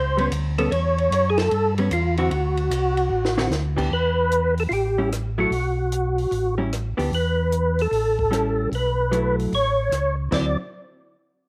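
A percussive tonewheel organ with third harmonic percussion, chorus vibrato and a slow rotary speaker carries the soulful, greasy melody over a round, mellow tonewheel organ bass with key click, a dark, compressed hollow-body jazz guitar comping from 0.2 seconds, and a dry cocktail drum kit with dark cymbals, a high-tuned snare and a fill at 3.1 seconds, all swinging at 150 BPM in D major in this soul jazz organ trio excerpt under light reverb.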